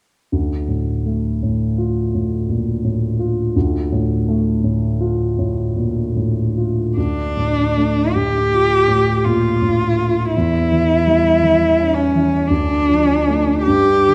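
In a flexible triple metre with plenty of rubato, this solemn, yearning romantic duo opens with the grand piano alone, its mellow, deep-bassed chords ringing with long sustain. At 7.0 seconds a single bowed cello enters up front and close, carrying an expressive melody with vibrato and portamento in a dark, sombre voice. The whole is set in a moderate stage reverb, and the passage is cut from a longer piece, ending at 14.1 seconds.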